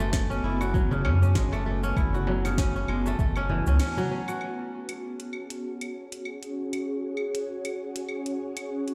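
Organic downtempo at 98 BPM in 4/4, this short excerpt from a longer piece has a meditative, hypnotic mood, with a 16th-note swing and a key of F# minor. An ethereal, airy pad holds sustained chords throughout, its detuned sawtooth and noise layer softened by ensemble chorus, phaser, built-in reverb and sidechain pumping, while an up-front fingerpicked kora rings out arpeggios with vintage 12-bit sampler grit and tape echo until 5.8 seconds. A round sine sub bass, also pumping against the sidechain, anchors the low end until 3.8 seconds, alongside a deep electronic kick. An electronic afro-pop kit with a sharp snare, metallic hats, cabasa and claves runs the full length, and a small, crisp metal-shell darbuka sits saturated in the background. A brief break arrives at 3.8 seconds with a band accent, and the harmony then settles from D6/F# onto F#madd9, all heard through large studio reverb as if played on a big sound system in a bare room.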